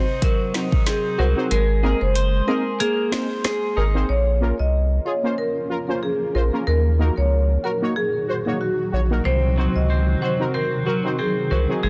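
Tough and sultry, this dancehall fragment moves at 93 BPM with a lightly swung 16th feel, led by a vintage-toned marimba melody struck with medium hard mallets and treated with delay. Punchy, detuned sawtooth brass stabs with chorus and sidechain pumping back it up, while a warm, clean twelve-string electric guitar adds lush chorused arpeggios that drop out at 4.7 seconds and return at 9.3 seconds. An up-front electronic afro-pop kit of deep kick, woody clipped snare, metallic hats, rim clicks and finger snaps plays only briefly at the start, a round sine sub bass carries the low end from 1.2 seconds, and a blurred, evolving granular pad drifts in at 5.0 seconds over a dense, dry, heavily limited mix.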